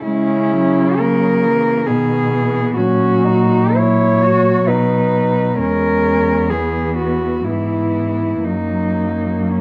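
Classical and lyrical, this tender fragment for four muted cellos moves at 64 BPM in 3/4 with uneven, rubato beats: an up-front melody cello with light vibrato sings over a distant second line that glides with portamento and soft attacks, a bowed accompaniment with light vibrato, and a smooth-topped, up-front bass, every voice con sordino and veiled, all within a dark production with light reverb that drifts through F#7/C#, B, E and F#.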